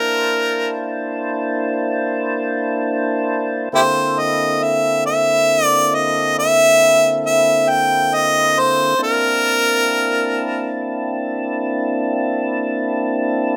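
A soulful, rollicking blues in a slow 12/8 opens with a clear harmonica and a tonewheel organ sounding together from the first moment. The harmonica carries the melody up front in a jazz-inflected solo, its clear tone colored by vibrato and punctuated by tongue slaps. Beneath it, the organ holds fat, clean sustained chords built on a C13 voicing, its tone turning gently through a slow rotary speaker. The harmonica drops out at 10.7 seconds, leaving the organ to sound alone until the fragment ends at 13.6 seconds. Light studio reverb surrounds both parts, and the rough home-demo mix gives this cut from a longer piece a loose, unpolished character.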